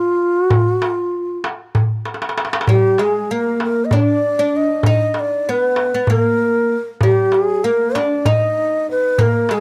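A Turkish makam ensemble piece in Bb makam hicaz, moving at 194 BPM in eighths over a straight 7/8, with a hypnotic, soulful mood, cut from a longer work. A breathy, mellow ney carries the melody from the start, its straight, tongued tone sitting up front with rolled-off highs, and a crisp metal-shell darbuka with a vintage, band-limited snap joins at 0.5 seconds and plays a drum fill just before a plucked, woody, fretless oud enters at 2.7 seconds with a deep second line. The sound is dry and close, like a 1970s studio recording with little reverb.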